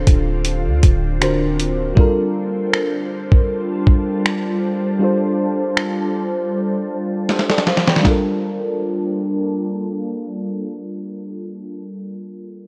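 Contemporary R&B in G minor at 79 BPM with a lightly swung 16th feel, sensual and moody: a round, deep 808-style bass sits up front only until 1.9 s beneath a lush, dreamy FM electric piano with a soft pad layer and chorus, while an ethereal, airy pad with phaser and its own reverb holds sustained chords and a gritty, compressed sampler-style kit of finger snaps, hi-hat, thumpy kick and snare drives the groove through a fill at 7.3 s before stopping at 8.2 s. A filter sweep runs across the opening eight seconds, and the recording carries the worn, warbling pitch drift of old cassette tape.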